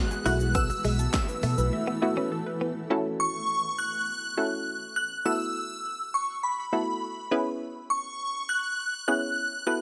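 A shimmering FM bell melody, a hollow, bouncy square pluck, a cloudy granular pad and a tight sawtooth arpeggio in the background open this euphoric, summery dance-pop excerpt, with chorus, phaser and delay on the bell and sidechain pumping on the pluck, pad and arpeggio. Almost at once a punchy house drum kit with a cracking snare and handclaps, a grainy egg shaker, a round, foam-muted electric bass and a twangy, clean direct-recorded guitar riff join in; the drums, shaker and bass stop at 1.7 seconds and the guitar at 2.7 seconds. From 2.9 seconds the bell and pluck carry on alone over F#m7, B7sus4 and C#m7 harmonies in a light reverb.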